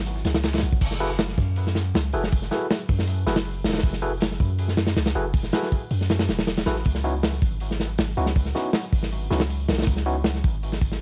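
Frenetic and raw, this drum and bass and jungle excerpt in F# minor runs at 159 BPM on a crunchy, saturated breakbeat kit sitting up front with dark cymbals and a tight kick, while a deep, mellow 808-style bass sustains underneath, a barky overdriven tine electric piano stabs through dub echo from 1.0 seconds, a faint sampler-style tambourine and snare and a barely audible warbling tape-like pad flicker only in the opening second, and the drop lands at 0.8 seconds over F#m11 and C#m11 chords in a dry, gritty small room flecked with vinyl crackle.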